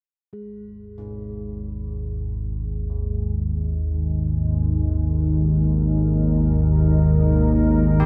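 Lightly reverberant studio ambience surrounds this ominous, unsettling dark ambient drone, a short section cut from a longer piece that floats in free time around a G#5 chord. A metallic bronze singing bowl, struck with a felt mallet and close-miked, fades in from 0.3 seconds with a meditative, slowly beating ring. Faint carillon bells sit in the background, playing bright arpeggios with a minor-third overtone and a worn iron clapper, sent through tape echo as they fade in from 1.0 seconds. The analog drone arrives at 1.1 seconds and stays up front, a low, evolving mix of detuned sawtooth, pulse-width-modulated pulse, triangle and ring-modulated tones with chorus and a filter sweep across its length. From 3.1 seconds a deep, moody pad fades in with sustained chords built from unison sawtooth, sine and a sub octave, softened by chorus and its own reverb into a mellow haze.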